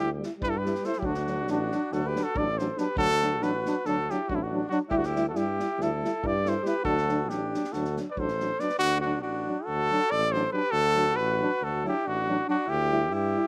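A breathy trumpet leads this festive, wild Balkan brass band excerpt in a straight 9/8, carrying the melody up front with light vibrato, scooped notes and a jazz inflection, its close-miked tone touched by a slapback echo. Beside it, a warm alto saxophone plays a second line with vibrato and a classical bearing. Two euphoniums fill out the accompaniment: one mellow, set in the background with light vibrato and the same slapback echo, the other distant in a roomy space. A tuba anchors the bass in a classical manner. An acoustic drum kit played with bundle sticks joins at 0.2 seconds, its punchy kick and medium-tuned snare heard from afar in a studio room, and it stops at 8.7 seconds just before the opening material returns, while the harmony sways between Dsus4 and D in a dry overall sound.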